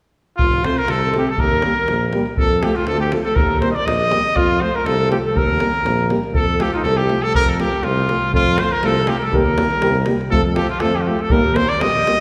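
A lightly swung 2/4 pulse from a tight davul drives this festive, virtuosic Balkan brass band excerpt, where a bright, up-front trumpet carries the melody over a mellow alto saxophone second line that drops out at 8.3 seconds and returns at 11.3, while a warm tuba holds the bass and a clear euphonium and a second, lightly vibrato-tinged euphonium fill in the accompaniment, the harmony swaying between F and Eb in a reverberant concert hall.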